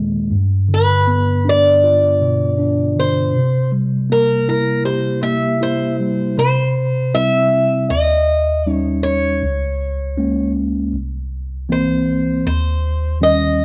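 Set in a straight 4/4 at 79 BPM, this reflective, melancholic acoustic folk-pop ballad opens with a mellow, clean tine electric piano heard through its built-in speakers laying down chords from G7 to C7, before a bright, boxy picked swing-style acoustic guitar with fresh strings enters at 0.7 s to carry the melody up front; the harmony shifts at 6.4 s through C, Eb7 and Bbm7/Db, and the piece is tuned to A4 = 438 Hz, with the whole recording sitting in a moderate large studio reverb and a worn, old cassette tape sound whose pitch drifts and warbles.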